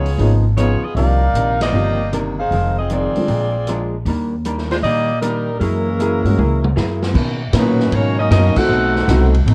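Big band swing with a joyful, brassy lift, this short excerpt has an up-front saxophone section carrying the melody with a clear, smooth top and light vibrato over a woody, growly pizzicato upright bass, a clean hollow-body archtop guitar and a distant, roomy drum kit with punchy kick. A warm baby grand piano sits in the background, dropping out between 3.3 and 6.2 seconds, while a bright trombone section enters at 5.6 seconds as a second line just before a drum fill. Ensemble accents punctuate the swing, and the whole take carries the warbling pitch drift of worn old cassette tape with little reverb.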